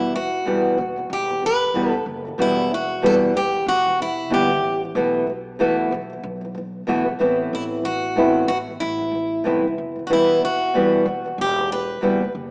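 A full-bodied, picked steel-string acoustic guitar carries the melody up front in this reflective, tender acoustic pop passage in E minor, set at 93 BPM with a gentle sixteenth-note swing and cut from a longer piece. A warm, fingerpicked nylon-string guitar plays classical-style accompaniment through Emadd9, B7sus4 and Amadd9, while a woody pizzicato upright bass sits low and quiet underneath. A lush hall reverb surrounds the rough, home-demo mix, which has a small-speaker sound.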